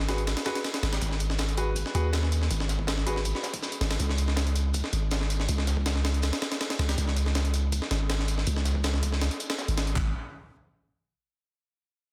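Dense and heavily limited in a small room, this dark, frenetic drum and bass piece with a jungle edge sets a deep, mellow 808-style sine bass up front beneath a gritty, pitched-up sampler breakbeat kit with a thumpy kick, high-tuned snare and handclaps, a very quiet, saturated acoustic breakbeat kit with shaker and rolled-off top tucked underneath, and clear concert grand piano stabs carrying dub echo that fall silent at 3.2 seconds, all moving from G#m7 to C#5.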